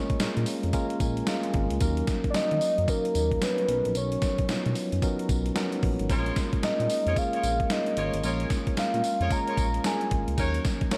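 A soft, round octave-layered synth lead with chorus, vibrato, slapback echo and digital delay carries the melody over a clean tine electric piano that opens with a fill from 0.2 to 1.8 seconds, while a dark, smooth synth bass and a crisp, overdriven 8-bit drum machine with a thumpy kick and tambourine push this punchy, bouncy new jack swing R&B excerpt along at 112 BPM with swung sixteenths in Bb phrygian, and distant, tight jazz-style horn stabs join at 6.1 seconds inside a lush, arena-sized hall reverb.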